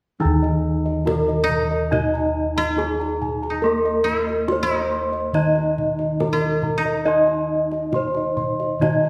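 A straight 4/4 pulse at 70 BPM drives this ceremonial, shimmering Javanese gamelan fragment in Eb pelog barang, cut from a longer piece. Two bronze metallophones carry the melody and the lower accompaniment, their paired tuning producing ringing, shimmering beats, while one set of mellow, round bossed gongs plays arpeggios high above and another supplies a full bass line. A tight kendang played with hard hands keeps time, a woody koto played with fingerpicks enters at 1.4 s with a second line, and the whole ensemble sits in the reverb of a recital hall.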